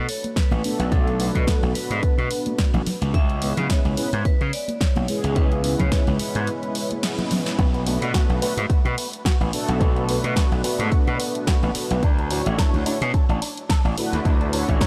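Lightly reverberant and sleek, this cosmic nu-disco passage, cut from a longer piece, rides a punchy, up-front electronic kick, a layered house drum kit of hi-hat, snare and toms, and background congas beneath a gritty, overdriven slap bass and sustained, detuned synth brass with sidechain pumping, chorus and analog delay, while a ringing vibraphone carries the melody with delay until 7.0 seconds, when a band accent and a drum fill lead into a drop at 7.6 seconds where a twangy, compressed envelope-filter guitar riff enters in the background.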